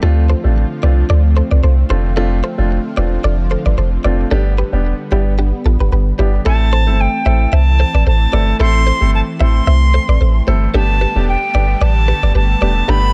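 Set in a studio reverb, this smooth, sultry afrobeats excerpt rides a swung groove, with a deep, punchy sub bass sitting up front under a clear grand piano's accompaniment and a detuned sawtooth analog pad holding soft, chorused chords. A bright, compressed clean electric guitar, recorded direct, picks a riff through digital delay as the harmony moves from Dm7 through F6 and G to Am and Gadd9. At 6.5 seconds a distant silver concert flute enters with a pure, tongued melody carrying vibrato.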